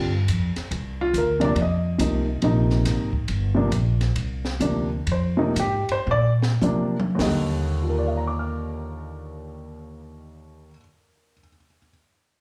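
A baby grand piano and a plucked upright bass open this relaxed jazz piano trio excerpt together, with an acoustic drum kit joining a moment later in a swung 4/4. The piano carries the melody with an intimate, up-front sound, its short sustain, audible action noise and slapback echo giving it a close, natural character. Beneath it, the woody, steel-strung bass sits just as close, while the drums sit further back, with dark cymbals, a high-tuned snare and a boomy kick. From 3.3 seconds the trio slows down, and a drum fill arrives at 6.1 seconds before the music settles onto a major-seventh chord and a new section. The drums drop out soon after, the bass stops at 10.7 seconds, and the piano plays on alone to the close. Heard as a live club gig through the venue's PA, the trio comes across with light reverb, small-room ambience and an easy, warm mood.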